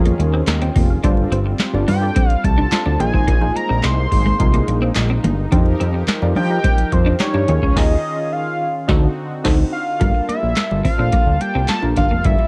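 A straight 4/4 groove at 107 BPM drives this slick, funky slice of early-eighties boogie funk in G phrygian, anchored by a booming analog drum machine up front with a deep kick, a crisp snare, metallic hi-hats, handclaps and crash cymbal. A fat, detuned sawtooth bass sits beside it, thick and decaying, while very quiet congas with a damped, thick skin add close, dry color. A punchy polysynth comp with a filter pluck and a dark chorused tone plays over a brassy, bold pad that holds sustained chords with tremolo in the background, and a clean, compressed semi-hollow guitar riff sits low in the mix. At 1.9 s a mellow, vibrato-tinged lead synth with a sub octave takes the melody, and the band hits an accent from 7.8 s before the harmony lands on Gm9 at 10.0 s. The home cassette recording is dry, with a tape-softened character on the comp, pad, lead and guitar.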